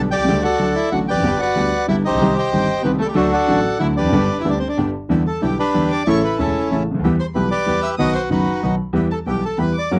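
Tango in a rubato 3/4, this short cut from a longer piece feels melancholic and tense. A reedy, up-front bandoneon carries the melody from 0.1 seconds. A clear concert grand piano with deep bass and short sustain anchors the accompaniment in a vintage tone. A second, darker bandoneon adds very quiet stabs beneath. A distant violin, played by one bowed player with light vibrato and a smooth, even line, takes the second part under a slapback echo. The harmony turns from a major home toward a minor colour at 5.1 seconds, captured in a dry, close 1970s-style studio sound with light reverb.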